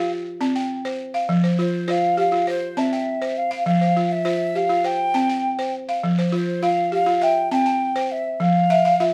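West African traditional music with a joyful, warm mood, built on a balafon whose woody, buzzing tone, struck with rubber mallets, rolls out dry arpeggios up front for the whole passage. Over it, an alto ocarina carries the melody with a clay, breathy sound, tongued notes, vibrato and an unsteady delivery. The pair play live together in a stone room with moderate reverb, and a short balafon fill at 8.7 seconds closes this cut from a longer piece.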